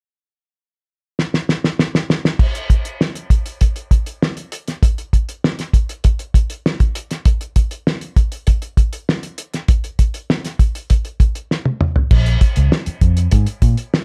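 A cloth-damped acoustic drum kit carries this driving, sly funk excerpt in a straight four. The kit enters at 1.2 seconds with a fill, its dry, thuddy sound pairing a fat snare and tight kick with dark cymbals, hi-hat, crash and toms under a rolled-off top. A second drum fill arrives at 11.5 seconds. At 12.1 seconds a vintage fingered electric bass joins for the closing stretch, moving between Bb1 and Bb2 with a round, foam-muted, amped tone. Both parts sit up front in a light reverb, and the piece is cut from a longer recording.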